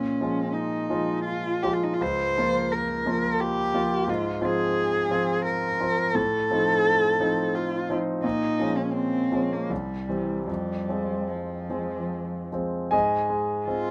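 Elegiac and melancholic, this romantic classical fragment for cello and grand piano unfolds in F minor at a rubato 3/4 pulse that moves between 72 and 89 BPM. A single bowed cello carries the melody within a range of F3 to C5, its warm tone shaped by vibrato, portamento and a soft attack that make the line sound deeply expressive. Beneath it, a bright, brilliant grand piano supplies the accompaniment across a broad span from C2 to Ab5, with a polished, present sound and long sustain. Both instruments play from 0.0 to 13.9 seconds and sit up front in a close, detailed recording with little reverb. The harmony moves from Bbm7 through Fm/Ab and F7/A, then returns to Bbm7 before C and Fm, arriving on Ab at 12.9 seconds.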